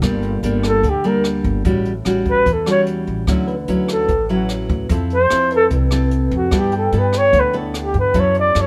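Fingerpicked nylon-string guitar with audible finger squeak, a thumpy gut-string upright bass and a brushed jazz kit with a boomy kick open this sophisticated, romantic bossa nova at 148 BPM; a breathy, intimate flugelhorn solo with light vibrato and scooped notes enters up front at 0.7 s, and a clean tine electric piano with phaser joins in the background from 3.5 s, over a dry sound and chords moving from Gm through Dmaj9 to G69.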